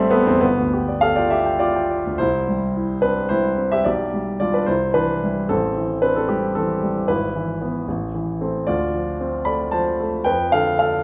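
A warm, natural-sounding baby grand piano plays alone and up front, spanning G1 to D6 in a passionate romantic character piece in C major, tuned to A4 = 441 Hz. The 6/8 pulse moves at 65-78 BPM in dotted quarters with expressive rubato, opening on G before a new section begins at 2.2 s and travels through C, G/B, Am7, E/G#, Am and Dm7, ending on Dm/F at 10.3 s. A moderate recital-hall reverb surrounds this brief passage, cut from a longer work.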